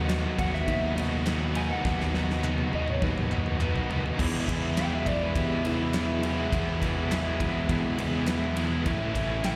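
Heard as a live gig through the venue's PA with recital hall reverb, this sunny, driving classic rock clip rides on a growly fuzz bass up front and a huge arena drum kit with punchy kick, fat snare and bright cymbals that plays a fill from 1.8 to 4.2 seconds, while a biting tremolo guitar, a hollow-body guitar with slapback echo, a very quiet double-tracked crunchy guitar, faint crisp handclaps and a gritty slow-rotary organ holding sustained chords fill in beneath a dark slide guitar that takes a solo at 4.2 seconds.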